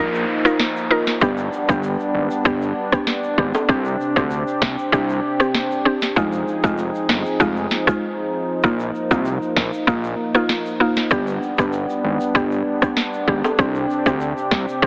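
A heavily compressed, AM radio-style sound with light reverb frames this hypnotic, tough dancehall excerpt, where a woody, round mallet-like synth pluck with chorus sits up front beside a smooth, warbling analog pad that pumps under sidechain, all over a fat, detuned sawtooth bass with a filter sweep. A downlifter sits in the background during the first 3.7 seconds, ringing tube shaker and hard-handed timbales enter at 0.1 seconds, and an electronic island pop kit with a tight kick, sharp snare and rim click, overdriven and up front, joins at 0.5 seconds. The chords cycle through suspended and minor-seventh shapes, with the opening stretch treated as a break until 8.6 seconds.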